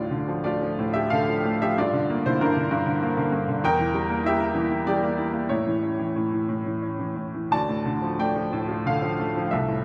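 A bright, woody upright piano plays alone from the start, a lyrical classical passage in D minor, in 3/4 at roughly 88-98 BPM with a relaxed, sunny mood and a freely flowing rubato. Its slightly detuned, brilliant tone sits up front with long sustain, moving from D minor through G minor seventh, E diminished and A before settling back on D minor near 7.5 seconds. A wet church reverb gives the piano a spacious, hall-like glow throughout this brief section, cut from a longer piece.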